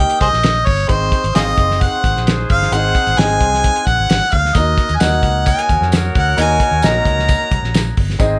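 A clear harmonica carries the melody up front in this uptempo 1960s-style soul excerpt, its jazz-style phrasing marked by light vibrato, tongue slaps and scooped notes. Running at 131 BPM in a straight 4/4, the piece has a warm, danceable mood, with the harmony moving from Eb to Ab and then turning to Ebm at 4.6 seconds. Behind the lead, a bright, sparkling glockenspiel struck with hard plastic mallets rings in the background, while a smooth-topped horn section with gentle vibrato adds a second line as an ensemble. A woody, open upright piano supplies the accompaniment, and a dark, round, foam-muted fingered electric bass anchors the low end. A cloth-damped, thuddy drum kit with a fat snare and tight kick plays in a small room, and a jingly tambourine joins in the background at 4.6 seconds. Light reverb surrounds the recording, which is cut from a longer piece.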